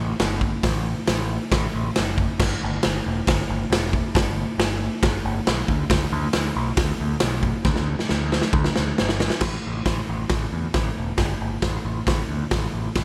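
Up front and punchy, a raw garage drum kit drives this rowdy garage rock passage, its crash, hi-hat, kick and medium-tuned snare sounding saturated and gritty with a rolled-off top inside a bright stone room that pumps around them. A growling picked electric bass, overdriven and heard direct and amped, holds the low end in a straight 4/4 feel from the first moment. A drum fill from 7.7 to 9.4 seconds carries the music into a new section that runs to the cut at 13.0 seconds, with light reverb over the mix.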